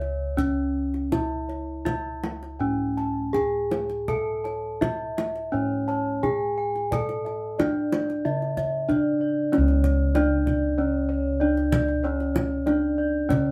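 A live-in-one-room recording with moderate studio reverb opens on a shimmering, hypnotic Javanese gamelan passage cut from a longer piece, its up-front bronze metallophone carrying the melody in a ringing, band-limited, vintage tone struck with wooden mallets. Round, beating bossed gongs lay down the bass in the background, while close-miked bossed gongs spin bright, dry, full arpeggios up front and a tight, acoustic kendang keeps a straight pulse. At 4.1 s a second metallophone joins with boxy, warm arpeggios, and the music moves into a new section at 9.5 s.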